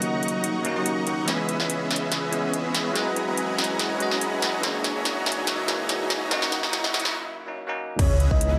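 A huge, detuned supersaw riff pumps up front over bell-like electric piano with tape echo, hushed sul tasto strings, a fat analog bass and punchy big-room drums with metallic hats, as this euphoric, lush half-time future bass excerpt at 143 BPM builds from 0.0 s through a filter sweep, a background riser and a drum fill into a brief break before a punchy electronic kick and a soft, round octave-layered lead land on the impact at 8.0 s.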